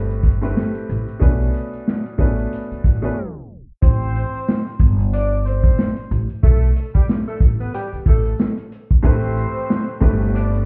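Swung 16ths at 92 BPM drive this moody, gritty boom-bap hip-hop excerpt in A minor. Up front sit a tight, lo-fi vintage drum kit with 12-bit sampler grit and a woody, growly pizzicato upright bass, while a brilliant upright piano with short sustain plays accompaniment until a tape-stop break at 3.2 seconds and returns at 9.0. Mellow saxophone section stabs with light vibrato, delay and plate reverb enter at 3.8, and a very quiet, jingly tambourine joins them, with the whole mix heard muffled as if through a wall in a stone room.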